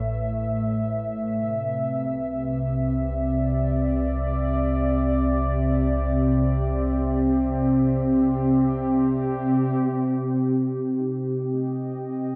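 Ambient music in free time with a warm, serene mood, where a warbling, nostalgic tape-like pad with chorus sustains up-front chords through a filter sweep from Aadd9 to Cadd9 over a deep, rumbling, ominous drone that stops at 9.9 s, when the harmony turns to Cm and a soft, round, barely audible pluck plays arpeggios from 11.0 s, all soaked in a lush hall reverb with cassette-tape character in this fragment of a longer piece.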